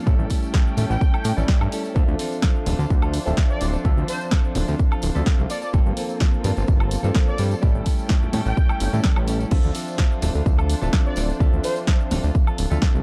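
A fat, thick analog bass sits up front from 0.1 seconds, its detuned sawtooth tone evolving under a filter sweep and pumping with the sidechain. It moves between D1 and A2 beneath a punchy, layered electronic kick. This groovy, nostalgic slice of filtered disco house runs at 127 BPM in a straight 4/4 in D minor, moving through A7, Dm7 and Gm11. A house kit of punchy snare, hi-hat, shaker, woodblock and crash cymbal pumps along with the bass, while ringing, dry tambourine and congas played with soft hands sit in the background. Behind them, a bright, barky tine electric piano with phaser, a clean, compressed, picked guitar riff recorded direct, and a veiled, muted string section bowing lush sustained chords with vibrato all breathe with the sidechain. From 0.9 seconds until 11.8 seconds, a bold, brassy analog synth brass melody with chorus and digital delay floats over the top, all within a dark digital ambience.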